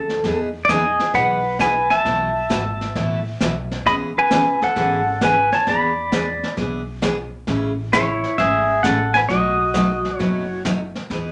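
Playful and cheerful, this short western swing cut from a longer piece moves at 132 BPM in E major with a swung eighth-note feel, passing through Emaj7, C#m11, Amaj7 and B7 colors. A bright, twangy pedal steel guitar carries the melody up front from 0.6 seconds, played clean with fingerpicks, slide and volume swells, while a full-bodied picked dreadnought acoustic guitar supplies accompaniment. Underneath, a woody, thumpy pizzicato upright bass on gut strings and a dark, smooth brush kit with a boomy kick sit in a wet club reverb.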